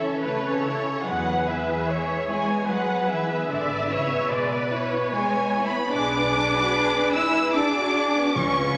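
Yearning and elegiac, this brief excerpt from a slow romantic orchestral movement unfolds at 74 BPM in 3/4 with a rubato feel. The first violins carry the melody up front, their lush, expressive vibrato soaring as high as E6, while a second violin section adds an intimate line beneath with light vibrato and a soft attack. Violas fill in the accompaniment with lush vibrato and portamento, and the cellos anchor the bass with a gentle, expressive bowed tone. A rich, distant double bass section joins at 1.1 s, deepening the low end as the harmony moves from A/C# through E to a darkening G#m7b5/B. Soft-mallet timpani with a round, calf-headed tone enter only at 8.4 s, and the whole ensemble sits in the generous bloom of a recital hall.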